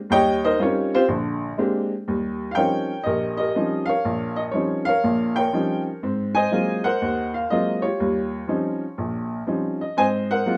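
A relaxed swing in 4/4 drives this short solo jazz passage, lifted from a longer piece, with a single upright piano carrying everything from its low bass to its upper register. The piano sits up front with a woody, boxy tone, moving through rich thirteenth chords in an easy, swinging mood. A moderate club reverb places it in an intimate room from its entry at 0.1 seconds until it stops at 10.6 seconds.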